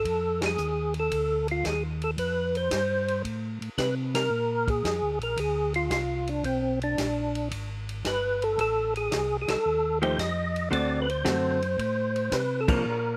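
Soul jazz organ trio with a swinging, soulful feel, where a fat, percussive tonewheel organ with key click, chorus vibrato and slow rotary speaker carries the melody over a round, mellow organ bass line, a vintage drum kit with dark cymbals and a tight kick, and a dark, picked hollow-body jazz guitar that adds accompaniment from 10.0 seconds, with band accents punctuating the groove in this short, dry cut from a longer piece.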